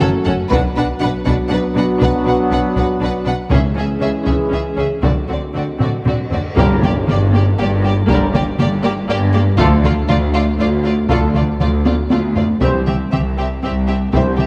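Relentless and dramatic, this cinematic orchestral film-score excerpt drives along at 120 BPM in 3/4, with heavy-stick taiko drums pounding beneath a lush, vibrato-rich violin melody, a second violin line, background violas, cellos and distant double basses, mellow horns and smooth-topped trombones holding sustained chords, very quiet bright cymbal swells with tam-tam from 3.5 to 8.5 seconds, round soft-mallet timpani hits, and dark, roomy trumpet stabs entering at 6.6 seconds as the harmony turns to G dorian, all set in a moderate scoring-stage reverb.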